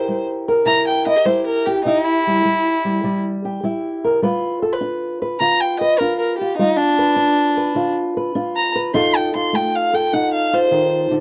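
A dark, woody fiddle carries the melody throughout this soulful, gritty acoustic country blues excerpt, bowed up front by a single player with light vibrato and a swung feel. Beneath it, an old ladder-braced acoustic guitar with boxy, aged strings is fingerpicked close in the mix, moving from C7 to G7 at 4.2 seconds and on to F7. The dry, intimate sound recalls a close 1970s-style studio session.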